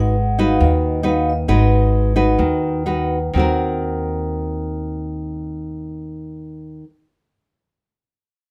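Smooth and wistful, this short bossa nova fragment in Eb minor moves at 121-142 BPM in a straight 4/4, easing into a slowdown over its first 3.3 seconds as the harmony shifts from Abm7 to Ebm6. An up-front, fingerpicked nylon-string guitar with a classical tone carries the accompaniment to 6.9 seconds, supported by a woody, growly pizzicato upright bass. A mellow, airy vibraphone with soft mallets and medium motor vibrato rings a brief melody in the background, stopping at 2.8 seconds, all within a light reverb.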